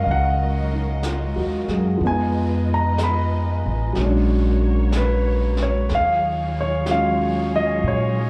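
A slow 62 BPM swung 4/4 jazz ballad in Eb minor, this wistful, smoky 8-second fragment of a longer piece moves from Gb69 through Fm7b5 and Bb7alt to settle on Ebm11. An intimate concert grand with audible action noise, long sustain and a slapback echo sits up front with a woody, thumpy gut-string upright bass entering at 0.1 seconds, while a dark, lush bowed string section holds sustained chords with expressive vibrato. Distant, roomy brushes on a high-tuned snare and hi-hat, also touched by slapback echo, sit far back, and the whole is heard as a live gig through a small club's PA with audible room ambience.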